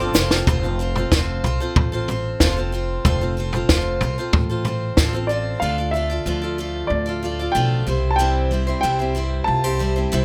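A lightly reverberant, nostalgic indie folk excerpt opens with a fill on a dry, punchy cocktail drum kit, brief touches of hushed felt-muted upright piano, reedy hand-pumped harmonium and mellow double-strung mandolin arpeggios with plate reverb, all over a boxy picked archtop guitar with finger squeak and a woody pizzicato upright bass; the kit drops out near 5.1 seconds as a smooth, vintage upright piano melody with slapback echo arrives and a bright, full-bodied fingerpicked steel-string guitar enters at 5.6 seconds.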